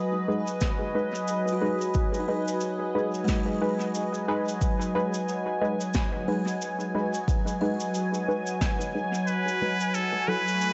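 A roomy echo-chamber reverb and a softened top end give this ambient dub excerpt a deep, meditative haze at 90 BPM in 4/4 with a gently swung sixteenth feel, as a smooth, detuned sawtooth pad with chorus holds sustained chords up front over G#m/F#. Around it, a woody, buzzing kalimba rings out arpeggios in the background and a muted, filter-swept chord stab with chorus and dub echo punctuates the groove, while brushed cabasa and snare with dub echo sit beside a tape-warmed, layered electronic kick that drops out at 8.8 s. At 9.3 s a nasal, brilliant trumpet with a straight mute enters for a brief classical-style solo with vibrato and dub echo, and the harmony shifts to F#m7 shortly after.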